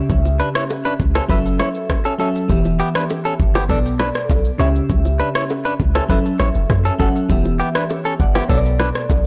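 A crystalline FM electric piano sits up front in this smooth, mellow afrobeats excerpt, its sparkling, fast-attack notes decaying through chorus and phaser over a cycle of C#dim, F#m7, Em and Bm7. Underneath, a deep log drum bass gives a round, dark, percussive low end and is the loudest part of the mix. A produced electronic afro-pop kit, re-recorded in a small room, pairs a knocking kick with rim clicks and shaker, with soft clipping on the snare, while close, dry acoustic congas and bongos sit in the background. From 0.4 seconds a bright, twangy clean electric guitar, picked and compressed and recorded direct, plays a riff through delay. The whole recording is blown-out and overdriven under a light reverb, and the piece is cut from a longer track.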